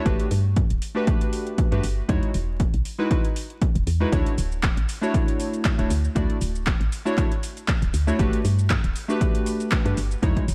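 A punchy, tape-warmed electronic kick drum sits up front in this sunny deep house excerpt at 118 BPM with a light 16th-note swing, alongside layered handclaps, shaker and metallic hi-hats, a soft, woody FM bass with sidechain pumping, and detuned, wave-folded analog key stabs carrying chorus, digital delay and their own pumping through Gmaj9, Emaj9 and Dmaj9, inside a dark ambience flecked with vinyl crackle.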